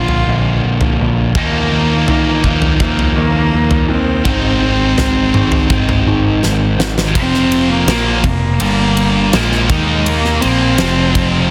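A rich, nasal bowed cello melody with vibrato opens this brooding, cathartic quiet-loud alternative rock piece at 83 BPM in F dorian, over dark, lo-fi phaser arpeggios from an electric guitar through a small old amp, an up-front overdriven guitar riff, a growling picked electric bass and a huge arena drum kit with a punchy kick, fat snare and bright cymbals, until a drum fill at 6.4 s leads to the arpeggios giving way at 7.1 s to a thick fuzz guitar riff in the background, all of it set in light reverb within a dense, heavily limited modern master.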